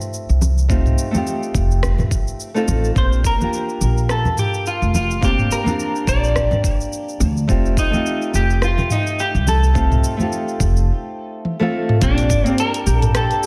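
Sunset chillout in Bb major at 106 BPM with a swung sixteenth feel, sunny and blissful, set in a moderate recital-hall reverb with a big arena sound. A dark, fingerpicked nylon-string guitar with slapback delay and a tape-warm, produced R&B kit of cabasa, hi-hat, rim click and toms run throughout, joined by a woody pizzicato upright bass up front, soft low-tuned congas in the background, and a gritty, overdriven electronic kick. At 3.0 s a clean, picked electric guitar takes the melody up front with chorus and delay, a break arrives at 10.9 s with a drum fill at 11.5 s, and a ringing Celtic harp adds arpeggios from 12.9 s as this cut-off portion of a longer piece ends.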